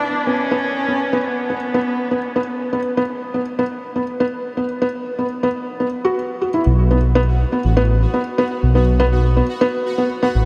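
Set to a straight 4/4 at 122 BPM in B minor, this eerie, intricate IDM fragment opens with a dark, bowed cello melody with vibrato and portamento, heard from 0.0 to 2.5 seconds, over soft, felt-muted upright piano arpeggios with audible action noise, before a deep, rumbling detuned saw bass enters at 6.7 seconds on a B5 chord and a pulsing, tempo-synced gated texture drifts in, all soaked in a huge, dreamy ambient reverb.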